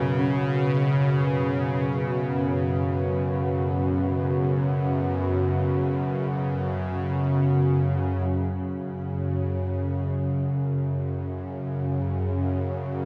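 Drenched in a cavernous cathedral reverb, this unsettling, desolate dark ambient drone, cut from a longer piece, sets a tense, string-like bowed drone with vibrato up front beneath a deep, moody sawtooth pad of sustained chords coloured by chorus and shimmer reverb, while very quiet, round gamelan-type bossed gongs play arpeggios until 6.3 s and a barely audible bronze singing bowl rings with slow beating until 8.3 s.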